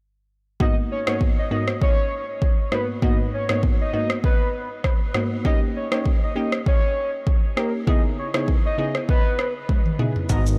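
Sultry and smooth, this afrobeats passage at 99 BPM in G# minor pairs a round, sub-octave synth lead with vibrato, chorus and analog delay against a crystalline wavetable pluck with chorus and a filter sweep, while an up-front, overdriven electronic kit with a deep kick, rim click, shaker and toms rolls into a drum fill at 9.7 seconds before a fat, detuned sawtooth bass lands at 10.3 seconds, all over G#m9, D#7 and C#m9 chords in light reverb.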